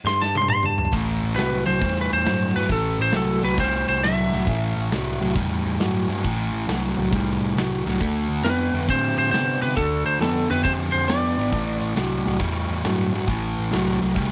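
A growly, overdriven bass opens as a big rock drum kit plays a short fill and a slightly broken-up lead guitar enters, before a double-tracked fuzz guitar riff lands at 0.9 seconds in this brooding, smoky swing of blues rock and southern rock at 136 BPM in A minor. The lead guitar sits up front with a compressed, warm tone, stepping out at 5.3 seconds and returning at 8.4 seconds, while the punchy kick and medium-tuned snare drive the shuffle. The chords move from Am7 to Dm7 and back inside a small room ambience, and the passage is cut from a longer piece.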